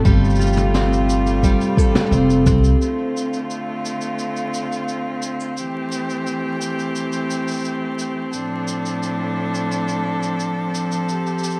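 A shimmering, octave-doubled twelve-string acoustic guitar picks arpeggios with tape echo to open this autumnal, intimate folktronica excerpt in D minor at 87 BPM, joined briefly by a woody pizzicato upright bass and a deep electronic kick before all three drop away by 3.4 seconds. From the very start, a bright, intense string quartet sustains chords from G9sus4 through Dm7 and Am7, its vibrato up front, while a distant brush kit of high-tuned snare, toms and cabasa carries on to 11.6 seconds. The dark production adds vinyl crackle and a small-room ambience.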